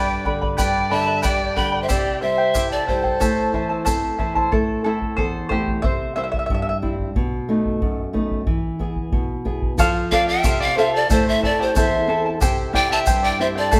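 Set in a live room with lush, reverberant studio ambience, this melancholic, wistful excerpt of Andean folk moves at 91 BPM in a straight 2/4 in A minor. An airy, crisp pan flute with audible chiff carries the melody over a dark, woody bowed violin line, while a shimmering, fingerpicked charango and an up-front flamenco guitar accompany, grounded by a deep bombo and a grainy, mellow tube shaker. The charango takes a solo from 4.5 s as the chords pass through B7 and E, then flute and violin return at 10.1 s.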